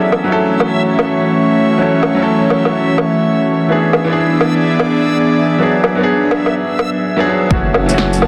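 A woody, brilliant upright piano sits up front in this nocturnal, melancholic slice of future garage, playing accompaniment chords that pump against a sidechain and trail off into delay. Alongside it, an airy, breathy pad holds sustained chords with a slow attack, a soft noise layer and a chorus shimmer. A reversed, dreamy granular texture hovers high above on a single note, bathed in its own reverb, until it stops at 7.0 seconds. Overdriven electronic woodblock, shaker and a fat snare push a swung groove forward, and the harmony moves from F#m7 through E7 and G#m7b5 before returning to F#m7. At 7.5 seconds a punchy overdriven kick lands alongside a deep, rumbling detuned saw bass with tube saturation and pumping, as this short cut from a longer piece closes with light digital ambience and a dense, heavily limited master.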